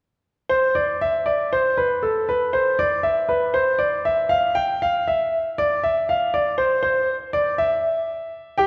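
Heard through a wet scoring-stage reverb with a 1.9-second decay in a dark, warm production, this excerpt of a joyful, lively baroque-style three-part fugue in C major, tuned to A4 = 439 Hz and moving at 59 BPM in a straight 4/4, features a brilliant, up-front concert grand piano playing solo from 0.5 to 8.7 seconds, its natural tone and deep bass carrying lines that sit between G4 and G5.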